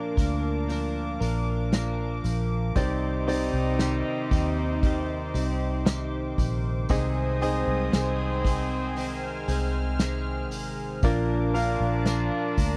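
A tender, hopeful pop ballad at 58 BPM in 4/4, this excerpt from a longer piece moves through Bb, Cmadd9 and Ab/C in a dry, close 1970s-style studio sound. A warm concert grand piano with audible action noise sits in the background beside a smooth, detuned sawtooth pad with chorus and slow attack, while a clean, direct-recorded electric guitar picks compressed, scooped arpeggios through analog chorus and a distant, nasal muted French horn section carries a second line. From 0.2 seconds a dark, foam-muted fingered bass sits up front with a small-room acoustic kit played with bundle sticks, its punchy kick and medium-tuned snare joined by a jingly, band-limited tambourine far back in the mix.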